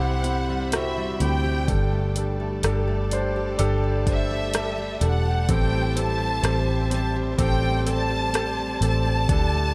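Pop ballad with a heartfelt, emotional mood, cut from a longer piece, where a lush, expressive violin section carries the melody over an up-front concert grand piano, a fingerpicked jumbo acoustic guitar playing arpeggios in the background, and sustained chords from a smooth-topped string ensemble. A dark, round, foam-muted electric bass sits up front beside an overdriven electronic house drum kit of kick, hi-hat and rim click, which plays from 0.2 to 9.5 seconds. The harmony moves from C to Gsus2 to Am7, and the sound is dry and close with little reverb.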